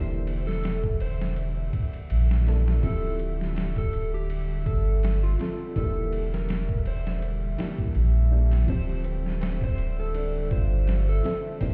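Trip hop at 82 BPM in D minor, this smoky, cinematic excerpt sways on a light sixteenth-note swing as the chords alternate between Em7b5 and Dm11. A round analog bass sits up front, deep and nasal with tube saturation. A gritty, pitched-down sampler-style boom bap kit enters at 0.3 seconds with a thumpy kick, a medium-tuned snare, hi-hat and ride in a small room. An electric slide guitar carries the melody, slightly broken-up and fingered, trailed by tape echo. It is supported by a felt-muted upright piano with harmonic tremolo and echo, and a warbling, nostalgic tape-like pad with chorus. A tense, string-like bowed drone hovers very quietly beneath, and at 9.0 seconds a second muted piano adds soft arpeggios. The whole mix sounds muffled, as if heard through a wall, with a stony room reverb.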